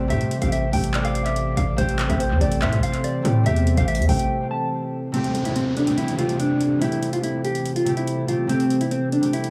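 A mellow, clean electric guitar carries the melody from the start, its dark tone softened by analog chorus and tape echo, while a fingerpicked concert harp rings up front beneath it and an airy, breathy pad holds sustained chords in the background, opening on Am7. This is an eerie, dark piece of trap-flavored hip hop in A minor at 143 BPM with a half-time feel, heard as a cut from a longer track. A smooth, gliding lead with vibrato and portamento sings a faint second line until 3.4 seconds, and a distorted, saturated 808-style bass hits heavy and aggressive until 4.3 seconds, when a brief break opens. A booming analog drum machine with handclaps and metallic hi-hats sits low in the mix, touched with tape echo. From 5.1 seconds an electronic downlifter sweeps through the second section until 8.5 seconds, all set in light reverb and a digital ambience that makes the mix feel steeped in echo.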